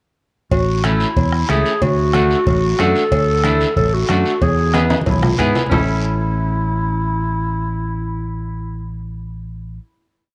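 Joyful and festive, this short, complete cumbia piece opens at 0.5 seconds with the band in a straight 4/4 groove. A growling clarinet plays a gritty, jazz-style second line up front with vibrato, while a round fingered electric bass carries the cumbia bass figure just as prominently. Joining at 0.8 seconds, a bright, clean semi-hollow electric guitar picks rhythmic triad chords. Underneath, a soft-beater bombo with rim sits in the background beside very quiet, low-tuned congas, a ringing cowbell with timbales, and a raspy, vintage-sounding guiro. The percussion plays a drum fill that leads to a final chord at 5.7 seconds, after which the clarinet holds on until 9.1 seconds and the bass and guitar until 9.8 seconds. Light reverb gives the whole band a small-room ambience.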